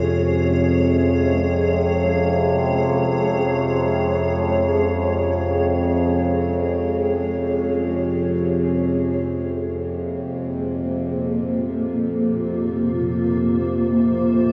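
An overtone-sweeping drone, resonant and chorused with a sawtooth-and-sine tone, sits up front beside a cloudy, blurred granular pad holding sustained chords, both sounding throughout this ominous, unsettling free-time dark ambient fragment tuned to A4 = 439 Hz, where the harmony shifts from Db5 to Bb5 at 9.6 seconds inside a wet cathedral reverb with a 7.5-second decay.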